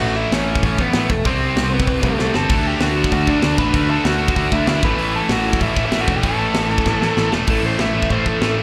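A rowdy, rebellious punk rock clip captured live through a club PA with light reverb, driving at 193 BPM in a straight 4/4. A dark, smooth lead guitar carries the melody over crunchy and bright overdriven rhythm guitars, a growling, punchy picked bass, and a polished, up-front metal drum kit with bright cymbals, while a double-tracked high-gain guitar joins the riffing at 2.5 seconds. The chords move from A through C5 and D back to A, drum fills mark the turns, and the lead breaks into a solo at 7.5 seconds.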